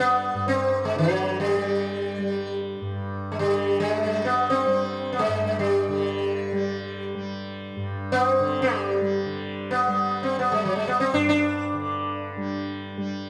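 A dark production sits in a moderate reverb, like a large scoring stage with a tail of 1.9 seconds, framing this devotional, radiant Hindustani classical excerpt. It unfolds in free time in G major, with the sitar up front carrying the melody between F#3 and D4, its plectrum-plucked tone bright and buzzing, and its sympathetic strings adding a shimmering halo. Beneath it, a softly plucked tanpura holds a mellow drone from G2 to G3, sitting well back in the mix. The passage repeats its opening material from 9.3 seconds. The sitar falls silent at 12.6 seconds, leaving the tanpura to carry on alone until the cut at 13.3 seconds.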